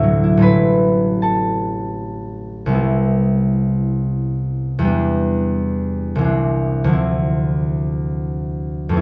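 Wistful and mysterious, this short passage from a longer classical work features a solo concert harp, fingerpicked and ringing, placed up front in a dark production with light reverb. The rubato playing unfolds in triple metre across a span from A1 up to F#6, with harmony passing through Am6, Cmaj7 and Em7 before reaching Cmaj9 and Dm9. The acoustic harp has a warm tone, and a new section begins at 2.8 seconds.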